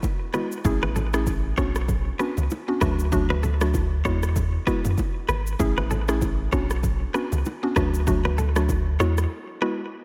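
A romantic, sunny afrobeats groove with a swung sixteenth-note feel, this short cut from a longer piece opens with an electronic afro-pop drum kit built on a deep kick, rim click and shaker, set up front alongside bongos and congas that sit in the background with a close, hard-handed acoustic snap. Just after the start, a woody, round, mallet-like synth pluck carries the accompaniment with quick, decaying notes touched by chorus, while a twangy, clean electric guitar picks a compressed, direct-recorded riff high above, colored by subtle chorus and delay. A punchy sub bass arrives at 0.6 seconds, its sine tone mellow and sustained after a pitch-drop attack, sitting prominently beneath everything else. The chords cycle through Eadd9, Amaj7, Bmadd9 and D, giving the harmony a gentle, open glow. A light reverb surrounds the mix, and the drums and bass drop out at 9.3 seconds for a brief break as the pluck and guitar ring on until 9.8 seconds.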